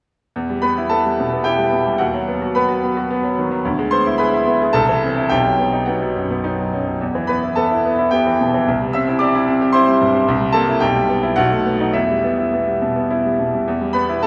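A brilliant, vintage-toned grand piano plays alone and up front from 0.4 to 14.3 seconds in this agitated, passionate classical virtuoso study in E minor, set in 3/4 at 108 BPM with a rubato feel and tuned to A4 = 443 Hz. Its long-sustaining notes span from B1 to E6 over a restless progression that passes through C and C7 before settling back on E minor via B7. A wet church reverb surrounds the piano, giving this fragment of a longer piece the spacious resonance of a church or concert hall.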